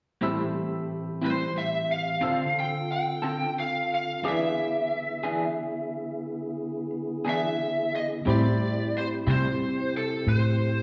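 A slow 12/8 blues at 60 dotted-quarter beats per minute carries a soulful, mournful mood through Am7, Dm7 and E7, with a clear grand piano, a slightly broken-up, tremolo-treated electric guitar through a small old amp, and a flute-like tonewheel organ with chorus vibrato, key click and a stopped rotary speaker all starting at 0.2 seconds. At 1.3 seconds an overdriven, lo-fi lead guitar through a small cranked amp takes the melody up front, and a round, foam-muted fingered electric bass joins at 8.3 seconds as the harmony returns to Am7. The whole excerpt sits in the lingering reverb of a church or concert hall and is cut from a longer piece.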